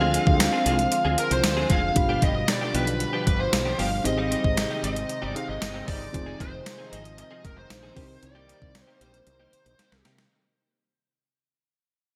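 Nostalgic and dramatic, this 1980s-style pop excerpt in C minor moves at 115 BPM over a Dm7b5, G7, Abmaj7, Fm7 and Cm7 progression: a dark, distorted lead guitar sits up front with a bluesy picked melody, above a mellow, chorused FM electric piano, a bright, detuned sawtooth pad in the background, a compressed clean electric guitar riff, a growly, round fretless bass and a thumpy, overdriven 12-bit drum machine of kick, snare, hi-hat and tambourine with gated reverb, all bathed in a lush digital hall ambience and fading out throughout, with a drum fill arriving at 9.8 seconds.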